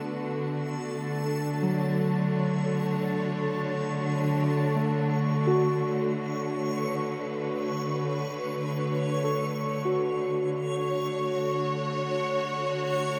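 A wet plate reverb and heavy echo wrap this serene ambient fragment in D major, cut from a longer piece and drifting in free time over a Dmaj7 chord. A lush, bowed string section sits close and up front with rich vibrato, holding sustained chords throughout, while a very quiet, detuned analog drone hums beneath until 4.5 seconds and a reversed, granular texture swells dreamily above. From 1.6 seconds, muted, felt-like synth keys with a dark, intimate tone add soft arpeggios, thickened by chorus and dub echo.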